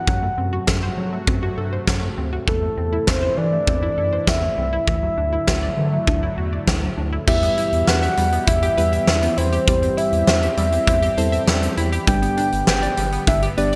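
A straight 4/4 beat at 100 BPM from a huge arena drum kit, its fat snare and punchy kick up front in gated reverb, drives this nocturnal, melancholic synth-pop excerpt in E minor, where a deep round analog bass anchors the low end and a dark, vibrato-tinged octave-layered synth lead with chorus and delay sings the melody over a sweeping, detuned resonant pad and sawtooth analog pluck arpeggios in the background, until mellow electric-piano-like synth keys join at 7.3 s and play a brief fill at 11.2 s, framed by bright 1980s-style digital production.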